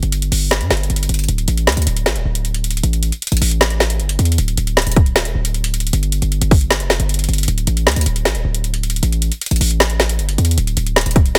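Eerie and dark, this fragment of a hip hop and trap piece moves at 155 BPM in 4/4 with a half-time feel, tuned slightly sharp at A4 = 441 Hz and shifting into a new section at 1.3 s. An electronic trap kit sits up front throughout, with a hard-clipped kick, a woody snare and metallic hi-hats. A heavy, punchy 808-style sine bass with a noise layer, fast attack and decaying tail holds the low end from D1 to G2, all in a dry, dense, heavily limited modern master.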